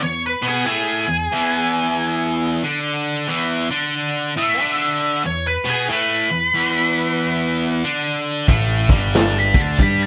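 A swung 92 BPM groove in 4/4 drives this gritty, swaggering blues rock and southern rock excerpt, where a bright, double-tracked overdriven electric guitar riff and a dark octave-fuzz lead guitar melody with wah sit up front over an E7 chord until the vintage drum kit, with its punchy kick, medium-tuned snare and rolled-off top, and a fuzzy, overdriven picked electric bass join at 8.5 s as the harmony moves to A5, all captured as a band playing live in one room with moderate studio reverb.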